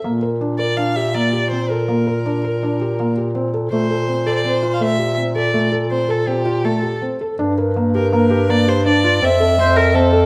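Restless and shimmering, this short cut from a longer piece of contemporary chamber music moves in an uneven 5/4 with a straight feel. A felt-muted upright piano plays soft, dark arpeggios throughout, its thick felt and audible action noise giving it an intimate, mellow quality. Beneath it, a clear bass clarinet carries the bass line up front, with light vibrato and scooped notes in a jazz style. From 0.6 seconds a single violin takes the melody, bowed with a rich, smooth, even tone and vibrato. Near the close, at 9.6 seconds, a viola enters with a second line over the closing Fmaj7 chord, played sul tasto with a soft attack and airy bow, sitting close and up front. The whole ensemble rests in a moderate recital hall reverb.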